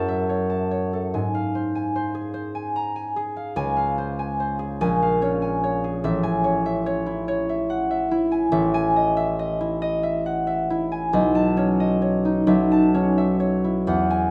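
In a 6/8 with a rubato feel, this graceful, serene excerpt moves slowly at 42-50 BPM counted in dotted quarters, in E major with tuning at A4 = 442 Hz. A solo concert harp carries the whole passage from 0.0 to 14.3 s, fingerpicked and sitting up front, its acoustic tone warm and ringing across a span from A1 to A#5. The harmony drifts through lush seventh chords, starting on F#m7, passing C#maj7 at 3.6 s and Amaj7 at 6.0 s, then settling toward B9 and a closing B9sus4. A wet recital hall reverb with a 1.3 s decay surrounds the harp and lets each note bloom into the room. Cut from a longer classical piece, the passage feels like a calm, unhurried statement.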